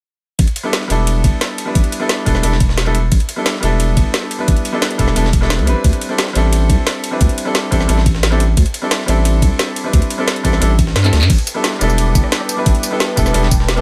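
Rolling and melancholic, this liquid drum and bass excerpt in A minor at 176 BPM rides a deep, saturated sub bass and an overdriven, knocking electronic kick beneath a layered garage kit of woody snare, metallic hats, claps, rim clicks, tambourine and crash, with a gritty, pitched-up jungle-style kit of ride and snare tucked behind, while a brilliant, intimate grand piano with audible action noise and tape echo moves from A9sus4 to D9sus4, the kick drops out for a drum fill at 11.0 seconds, and an airy, breathy, detuned pad with chorus, phaser and sidechain pumping joins at 11.7 seconds in a dry mix.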